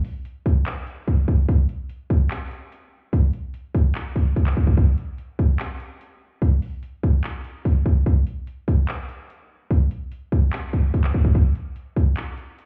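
A half-time trap groove at 146 BPM in 4/4 drives this brooding, menacing hip hop fragment, cut from a longer piece. The electronic trap drum kit carries the whole 12.7 seconds, pairing a hard-clipped kick with metallic hi-hats and handclaps. The produced drums sit up front in the mix, giving the kick and hats an aggressive, close presence. The overall sound is heard muffled, as if through a wall, with a club reverb and shaping EQ that suggest a party pounding in the next room. The single section holds one steady, ominous pulse from start to finish.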